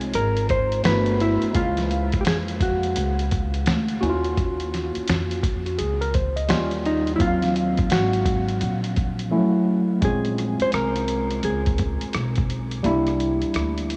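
This jazz-hop excerpt, cut from a longer hip hop piece, has a smoky, nocturnal mood and a swung sixteenth-note feel in 4/4. A dark, clean hollow-body jazz guitar, fingered, carries the melody until 12.5 seconds. A worn, slightly out-of-tune tine electric piano sits up front with jazz chords heard through its built-in speakers. Underneath, a woody upright bass played pizzicato on gut strings gives a thumpy low end. The compressed, muffled sampler-style kit, also up front, sets a thumpy kick and medium-tuned snare against hi-hat and rim click with vintage 12-bit grit, and it drops out briefly from 9.3 to 10.0 seconds before a new passage begins. A huge ambient reverb soaks the mix in a dreamy haze, set against a small room ambience.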